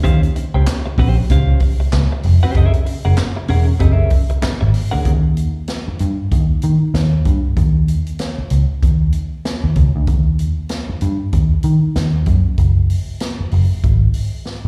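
A swung sixteenth-note groove at 96 BPM in 4/4 drives this energetic, playful funk cut, taken from a longer piece and heard as a live gig through the venue's PA, with recital-hall reverb. A swinging big-band drum kit sits up front with a natural, acoustic studio-room sound, combining a boomy kick, a medium-tuned snare, hi-hat and handclaps, and it rounds off with a fill at 14.5 seconds. Beside it, a vintage muted picked electric bass is just as forward, with a dark, round, foam-muted, amped tone that reaches down low. A clean, compressed electric guitar with a warm picked tone and slapback echo sits farther back, voicing a rootless Eb13 and then Gb9 before dropping out at 5.1 seconds. From there the bass and drums carry the groove over an unharmonised stretch until a Gbsus2 arrives near the close.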